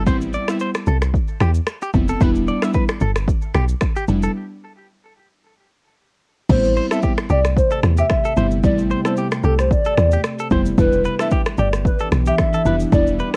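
A twangy, clean electric guitar riff with tape echo and a round, percussive log drum bass open this sultry, smooth afrobeats excerpt at 112 BPM in A minor. They are joined at once by chorused digital keys and a punchy deep house kit of kick, rim clicks, finger snaps, shaker and crash, moving over Am7 and Em7 with a light 16th-note swing. After a break from 4.4 to 6.5 seconds, a hollow, woody clarinet-like synth lead with vibrato, chorus and plate reverb takes the melody, and at 7.5 seconds an ethereal, glassy FM pad settles in the background with slow-blooming sustained chords, all captured as a home cassette recording in a lightly reverberant room.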